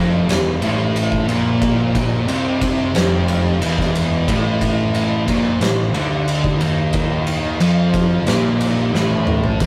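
Stoner and doom metal at 90 BPM in 4/4, sludgy and ominous, cut from a longer piece and caught as a rough rehearsal-room recording in a small booth. Three distorted guitars sit in the background playing the low riff: a bright, double-tracked high-gain guitar, a warm fuzz guitar and a very quiet, dark fuzz guitar. Beneath them is a growly, punchy bass with fuzz, overdrive and tube saturation, heard direct and amped, as the harmony moves from Fmaj7/E to A#maj7/A at 4.3 seconds. An oversized, low-tuned acoustic drum kit enters up front at 0.3 seconds with a big pumping room, gritty saturation, shadowy cymbals, a medium-tuned snare and a hard-hitting kick, rolling into a drum fill at 8.9 seconds.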